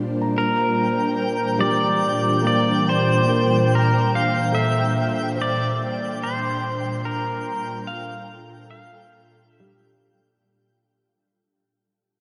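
Weightless and luminous, this ambient excerpt in 3/4 at 72 BPM drifts over C7/Bb and Gm7/Bb, with a bright, twangy pedal steel guitar up front playing a slide melody with volume swells, an ethereal, airy pad holding detuned sustained chords, a felt-muted upright piano softly arpeggiating in the background, an evolving analog drone on Bb2, and a twinkling granular texture sparkling high above, all steeped in a huge 7.2-second reverb and cassette-tape grain as it fades out from 3.7 seconds.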